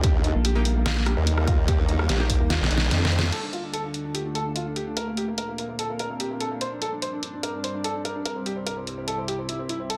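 Two wobble basses dominate the opening of this chaotic, menacing heavy dubstep excerpt. One sweeps through formant shapes with sawtooth bite and overdrive, and the other is a dark, nasal vowel-sweep line with chorus and overdrive; both sit up front. They hit in a half-time drop alongside a punchy electronic kick and a layered dubstep kit with a deep snare, crash cymbal, hi-hat and rim click. A drum fill closes the drop as the kick falls away; the vowel-sweep bass stops at 2.6 seconds and the formant-sweep bass at 3.3 seconds. Throughout, a boxy grand piano carries the melody with vintage 12-bit sampler grit and delay, over a bright, morphing wavetable pad whose sustained chords pump with sidechain and carry phaser, chorus and reverb. Early on, a bold, detuned orchestra-hit-like synth stab with ring modulation and a filter sweep sits in the background of a dense, heavily limited mix with light reverb and digital ambience.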